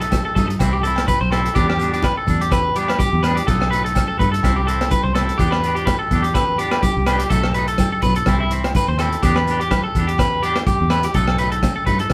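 Danceable and warm, this highlife guitar band groove in E minor moves at 125 BPM in 4/4 with a 16th-note swing, cycling through B7, Am/C and Em7 across a short cut from a longer piece. Up front, a twangy, picked electric guitar at the edge of break-up plays arpeggios in a higher range, while a second, clean and bright electric guitar picks out accompaniment further back, bathed in spring reverb. Underneath, a fingered electric bass gives a round, foam-muted, dark tone, joined by a crunchy breakbeat kit whose saturated, gritty sound and tight kick sit prominently, its hi-hat, kick drum and rim click given a rolled-off top. Congas with a thin skin and soft hands sit very quietly and close, ringing agogo bells hang in the background, and grainy, mellow maracas sound distant in a large room. The whole band plays live together in one room under a moderate studio reverb. The guitars, bass and kit run from the opening moment through to about 12.1 seconds, while the hand percussion enters just after the start, with the agogo bells and congas dropping out shortly before the end.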